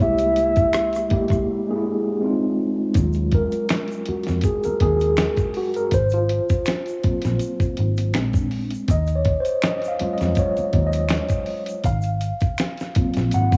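A lightly swung sixteenth-note groove in 4/4 anchors this smooth, soulful neo-soul R&B excerpt, built on a gritty, compressed sampler-style drum kit with a thumpy kick, fat snare, rim click and hi-hat, a dark, round, foam-muted picked electric bass, and a faint, close egg shaker with finger snaps. A full, octave-layered synth lead with chorus, vibrato and a sub octave sings a brief melody that ends at 1.4 seconds. After a break from 1.5 seconds, the mellow, clean tine electric piano that has been accompanying from the start takes an up-front solo from 3.0 seconds, with cassette-tape coloring on the lead, piano and drums and light reverb giving the piece a homemade, dusty character.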